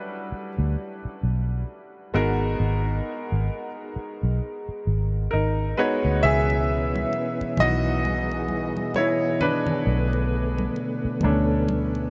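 Swung sixteenths ease through a slow 4/4 in this late-night, introspective neo-soul R&B excerpt, where a clear, worn grand piano and a round, punchy, foam-muted electric bass sit up front over Em9 and G#m9 harmonies. At 6.2 seconds the piano moves into a solo as a mellow, percussive tonewheel organ enters with key click, chorus vibrato and a fast rotary speaker, joined at 6.5 seconds by close, dry congas with a thick skin in the background. The whole dreamy mix is soaked in a huge ambient reverb, drifting through C#m9 to Bm9 before the cut.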